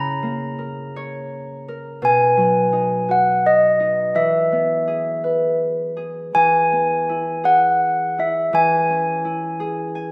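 Moderate scoring-stage reverb with a 2.0-second tail surrounds this short cut from a longer piece, a sleepy, gentle children's lullaby in 6/8 at 56 BPM that moves in a loose rubato. Up front, clear, bell-like handbells with soft clappers and a boxy small-room tone carry the melody from D#5 to A#5, while an up-front, fingerpicked acoustic Celtic harp, warm and ringing, plays the accompaniment from B2 to G#5 over chords moving from A#m/C# through B6 and E to C#m/E. The melody is stated twice, with the second pass starting at 6.4 seconds, and the harp closes with a brief fill at 9.6 seconds.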